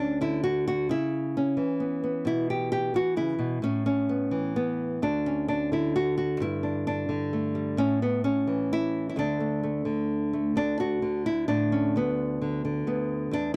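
The recording is dry and close, with a small 1970s-style studio sound that places the guitar up front. This is a pastoral folk piece in triple metre for solo nylon-string guitar, played with a loose, rubato feel and a warm mood. The fingerpicked guitar has a warm, small acoustic tone and ranges from its low bass strings up into its middle register. The harmony drifts through open-sounding shapes such as C#m7, Aadd9 and Gsus2, broken by brief chordless moments, before moving to A at 7.8 seconds and D5 at 9.2 seconds. A new section begins at 10.6 seconds and closes on Bm/D, and the passage ends as though cut from a longer performance.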